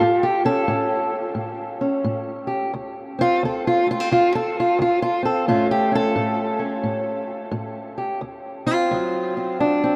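Drenched in a huge, echoing ambient reverb that places it in a vast space, this short cut from a longer acoustic country blues piece features a lone fingerpicked steel-string parlour guitar, dark and boxy with audible finger squeak and sitting up front, playing a soulful, swaggering swung line over A7, D5 and A7 before shifting to D7 at 8.2 seconds.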